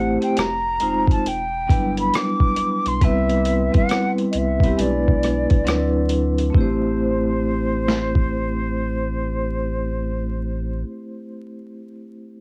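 Lo-fi hip hop in A dorian at a swung 68 BPM, this nostalgic, hazy fragment of a longer piece sets an airy, distant flute melody over ringing, metallic vibraphone with medium motor vibrato and a round, deep sub bass with transformer saturation, while a gritty, compressed boom bap kit with a thumpy kick and high-tuned snare plays from 0.2 to 8.3 seconds, the chords drift from Fm7 through Cmaj7 to Am7, the vibraphone rings on alone until 12.4 seconds, and the whole home cassette recording carries vinyl crackle and a modest studio ambience.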